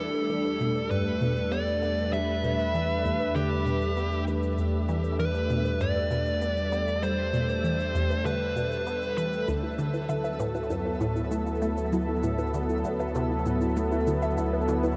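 A straight 4/4 pulse at 98 BPM carries this cosmic, expansive slice of sequencer-driven space music in E minor, cut from a longer piece. Electronic bongos and cabasa, touched with delay, fade in beneath a squelchy, resonant blip pluck whose bright, phased riff repeats through echoes, while a round sine sub bass anchors the low end. A lush, thick unison pad holds sustained chords up front with chorus, and from 1.2 seconds a twinkling granular texture fades in far behind it, sparkling with an octave-up shimmer. A dark, overdriven electric lead guitar carries the melody with delay until 9.5 seconds, where the harmony moves from Em to D and a dusty, lo-fi pluck takes over with chorused arpeggios in the background. The whole piece sits in a huge, wet ambient reverb and has the warbling pitch drift of worn cassette tape.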